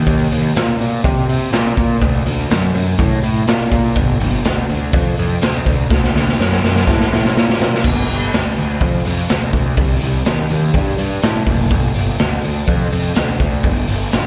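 Heard as a live gig through the venue's PA, this short cut from a longer piece carries a recital-hall ambience and the smeared edges of lossy compression. It sits between blues rock power trio and southern rock in a straight 4/4, with a brooding, gritty mood. A fuzz-drenched picked electric bass sits up front, its overdriven tone growly and warm as it moves through a low register. The raw garage drum kit is acoustic and saturated, with a punchy kick, a medium-tuned snare, hi-hat and crash cymbal captured in a small, pumping room with a rolled-off top. A drum fill runs from 5.9 to 7.8 seconds, and the same section then repeats to the close at 14.3 seconds.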